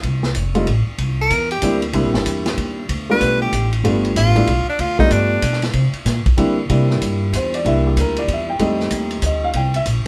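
Captured live in one room with a moderate studio reverb, this relaxed, sophisticated cut from a longer small-group swing and bop jazz piece moves at 189 BPM in a swung 3/4 in C mixolydian. A growly, woody pizzicato upright bass and a vintage drum kit with a punchy kick, medium-tuned snare, hi-hat and ride support a warm upright piano over changes through F, C7, G7 and F7, while an edgy, forceful tenor saxophone steps up front for a solo full of scooped notes from 1.2 to 5.6 seconds.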